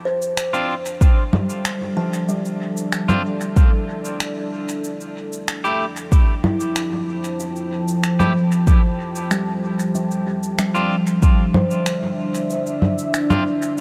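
A steady, straight four-four groove carries this hazy, meditative ambient dub excerpt. It is anchored by a deep, overdriven electronic kick that sits up front from 1.0 s and falls away by 11.4 s. Around it, electronic cabasa, finger snaps and congas add a gritty, overdriven texture, soaked in studio reverb and dub echo. Underneath, a dark, moody pad fades in on a sustained Fmaj9, its detuned sawtooth and sine layers, sub octave, wave-folding and ring modulation softened by slow attacks, chorus and a long release. A woody, hollow-sounding kalimba plays ringing thumb-plucked arpeggios through tape echo. A clean, scooped electric guitar drops warm picked stabs into dub echo from 0.5 s. The whole mix floats in a huge ambient reverb with a long tail of 6.2 s.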